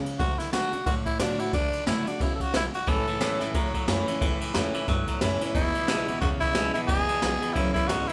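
Recorded live in one room with light reverb, this rowdy, upbeat rockabilly cut swings at 179 BPM in A major, as a raspy, growling tenor saxophone carries the melody up front over a brush-played drum kit with dark cymbals, a high-tuned snare and a boomy kick, a woody, thumpy pizzicato upright bass and a full-bodied picked dreadnought acoustic guitar in the background, joined at 2.9 seconds by a twangy, clean, compressed electric guitar riff.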